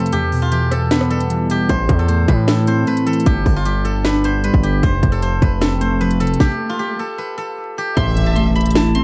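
An echo-heavy mix with vinyl crackle and light reverb frames this dark, hard-hitting half-time trap excerpt, where a silvery steel-string zither plays the melody with fingerpicks through analog delay over detuned, warbling lo-fi synth keys, a trap kit with a hard-clipped kick, sharp snare and crisp hats, and a heavy distorted 808-style bass that enters at 1.7 seconds. A very quiet electronic swell rises from 6.0 seconds into a stop at 6.4 seconds, and at 8.0 seconds the impact lands alongside a brief note from a lush, distant violin section.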